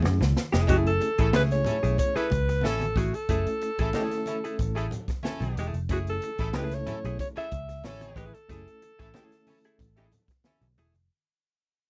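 Hypnotic and funky, this short cut from a longer piece moves at 92 BPM in a straight 4/4, resting on an F#m9 chord in F# minor. A drum fill on the swinging big-band kit opens it, with a punchy kick and medium-tuned snare up front. A dark, round, foam-muted electric bass anchors the low end, while low-tuned congas sit distant in a large room behind. A clean, compressed hollow-body jazz guitar accompanies gritty, overdriven reed electric piano stabs that shimmer with fast tremolo through a combo amp. The breathy, mellow alto saxophone carries the melody up front from 0.7 s with light vibrato, and a warm horn section adds a smooth second line from 1.2 s, all captured in a dry, close 1970s-style studio sound as the passage fades out.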